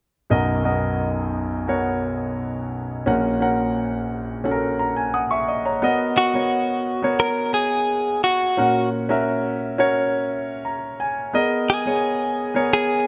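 A clean, picked electric guitar with a scooped, compressed tone carries the melody from 6.2 seconds, sitting up front over an uplifting, hopeful pop groove at 87 BPM in a straight 4/4. Beneath it, a polished concert grand piano with a deep bass provides the accompaniment from the start, adding fills at 4.4 and 10.3 seconds as the harmony moves from Bmaj7 to F#/A# and settles on G#madd9. Light reverb and studio ambience give this hopeful passage, cut from a longer piece, a warm, present sound.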